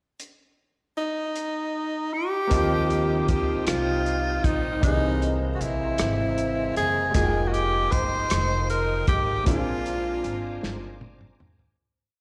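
The clear, close-miked tenor saxophone carries this slow, soulful gospel piece, singing a motif-based melody with vibrato and scooped notes in a jazz style, its tone touched by slapback and tape echo. It enters at 1.0 seconds over a dry, muffled soul drum kit with a tight kick and rolled-off top that sets a slow six-eight groove at 52 BPM in Eb major. At 2.5 seconds the verse opens as a baby grand piano adds held chords in close voicing with grace notes, and a woody pizzicato upright bass with steel strings plays a slow gospel bass line up front. Behind them, a reedy tonewheel organ with key click and a slow rotary speaker holds a very quiet sustained pad, while a French horn section with light vibrato sustains chords in the background. The chords move from Eb69 through C7alt and Fm11 to Bb9, and the whole reverent performance, heard as a live gig through the venue's PA with recital hall reverb, fades out from 9.5 seconds beneath a closing drum fill.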